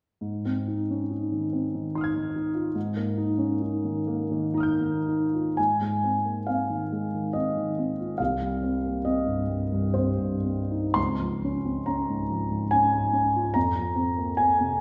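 Dreamy and serene, this short passage of impressionist classical music is cut from a longer piece for solo grand piano. In an unhurried triple metre with a freely breathing rubato, the piano plays alone from 0.2 to 14.8 seconds, ranging from deep bass notes up to a high, glinting treble. Its tone is clear, present and polished, with long sustain that lets each chord ring and blend into the next. The harmony drifts through colourful extended chords such as Fm11/Ab, Cm7 and Db6 before settling on F minor near the close. A new section begins around 5.6 seconds, and the whole is heard from further back in a recital hall whose generous reverb wraps the instrument in a soft, lingering halo.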